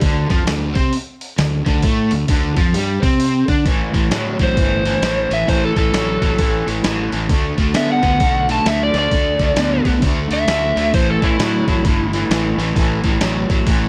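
A crunchy, double-tracked overdriven guitar riff opens this raunchy, swaggering blues rock and southern rock cut, joined from the start by a growly fuzz bass and a dusty, sampler-style drum kit with a thumpy kick and fat snare. The groove moves at 132 BPM in 4/4 with a swing feel on the eighth notes, and the riff guitar carries a harmonic tremolo over power chords shifting between D5 and A5. At 1.8 seconds the kick and snare drop out, leaving the hi-hat under the riff and the punchy, overdriven bass until the kit's full beat returns. An overdriven slide guitar then enters at 4.4 seconds and takes the lead with a fingered solo in a higher register, its slapback echo giving it a bold, forward presence. The drums have a compressed, gritty, tape-toned character with the spaciousness of a large room, and a light reverb sits over the mix. The passage is cut from a longer piece.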